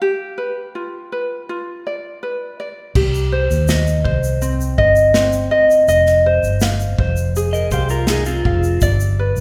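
A light, fingerpicked ukulele opens this easy-going, carefree acoustic pop excerpt over a G7 chord, its sound close and intimate in a spacious concert-hall reverb. At 3.0 seconds a dark, round, foam-muted electric bass and an airy, polished country drum kit with punchy kick, snare, shaker and crash cymbal join as the harmony moves through Cm and Fm7. A slightly broken-up, compressed electric guitar adds a brief picked second line from 7.5 seconds before the music settles on G.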